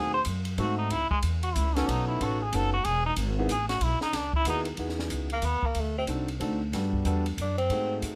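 A buzzy, metal-muted trombone solo with light vibrato opens this relaxed small-group swing excerpt in 3/4 at 186 BPM in E major, over clear grand piano accompaniment, a woody pizzicato upright bass and an open jazz kit with a boomy kick and high-tuned snare, until the trombone stops at 4.6 seconds and a distant, subtoned tenor saxophone with scooped notes carries the melody from 5.3 seconds in light reverb.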